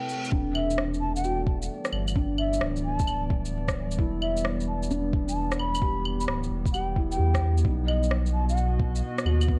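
Swung sixteenths in 4/4 drive this melancholic, ghostly future garage excerpt, where a soft, up-front electronic kick and tape-toned shaker, claves and rim click sit in small room reverb above a deep, round sine sub bass that pumps to the sidechain. A felt-muted upright piano, dark and intimate with audible action noise and vintage 12-bit sampler grit, plays accompaniment through analog delay and sidechain pumping, while a warbling, detuned, lo-fi pad with ring modulation holds sustained chords through chorus, built-in reverb and sidechain pumping, moving from Em7 to B at 7.7 s. A breathy wooden baroque flute, unsteady, with vibrato and rolled-off highs, carries the melody through analog delay until 8.7 s, all wrapped in a cassette-tape sound with light reverb and digital ambience.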